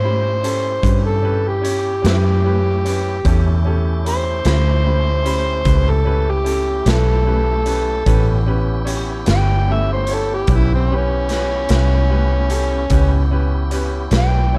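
An overdriven, amplified harmonica takes a swaggering solo up front in this slow 12/8 blues excerpt, its gritty tone marked by light vibrato, tongue slaps and scooped notes in a jazz-inflected style. Beneath it, a round, foam-muted electric bass sits punchy and close, a woody, brilliant upright piano supplies accompaniment, and a tonewheel organ holds full, lightly overdriven chords with key click and fast rotary speaker in the background, all over an A9 chord. A raw garage drum kit enters at 0.4 s with a saturated, punchy kick, medium-tuned snare and hi-hat in a pumping stone room, and the production overall has a dark, warm reverb-tinged sound.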